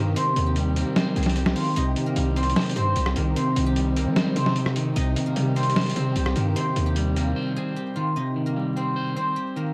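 Brooding and dark, this half-time trap and hip hop excerpt in C minor at 150 BPM pairs a bright, silvery guzheng melody with a twangy, slightly broken-up electric guitar, lush bowed strings in the background until 8.1 seconds, a heavy, distorted 808-style bass and gritty, pitched-down sampler-style drums of hi-hat, rim click and snare, both dropping out at 7.3 seconds for a break, all set in light digital ambience with vinyl crackle.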